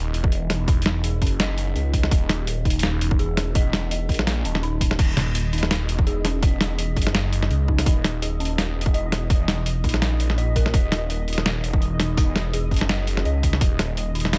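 A dark, eerie FM synth bell opens this cinematic, heavy half-time drum and bass excerpt, spinning arpeggios between Db4 and Eb5 with an inharmonic, warbling vintage tone softened by chorus, phaser and delay. Beneath it, a thick, swirling sawtooth bass sits up front from the first moment, saturated and sustained as its phaser churns through the low register from Eb1 to Db2. The drums arrive almost at once: a gritty, pitched-down sampler-style kit with a compressed, tape-tinged crash, hi-hat and medium-tuned snare, driven by a hard-clipped, overdriven electronic kick that hits hardest in the mix. The groove runs at 167 BPM in 4/4 with a lightly swung half-time feel, rooted on Eb minor in an Eb phrygian colour. At 5.3 seconds a soft, pulsing gated texture slips into the background on a high Eb5, its tempo-synced triangle unison blurred by chorus and its own reverb, while the rest of the mix stays close and dry.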